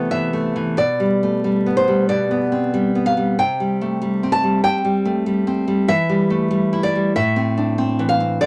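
Rubato with uneven beats gives this short excerpt of a romantic solo classical guitar piece a nostalgic, sunny feel, as a fingerpicked nylon-string guitar sits up front in a small, reverberant room, spanning low to high register over a bed of vinyl crackle.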